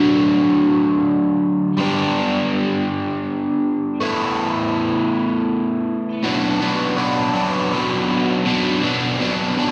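A crunchy, overdriven electric guitar carries this short rock excerpt on its own, picked and double-tracked and sitting up front with a phaser coloring its tone. The mood is jangly and carefree, moving in a straight 6/8 at 54 BPM counted in dotted quarters. The guitar spans from B2 up to A4, outlining a progression of D, G and Asus2 before the harmony shifts to Bm at 6.2 seconds for a contrasting passage. A long church reverb with a 3.0-second decay surrounds the playing, giving it the airy sense of a large hall. The clip runs 9.7 seconds and is cut from a longer piece.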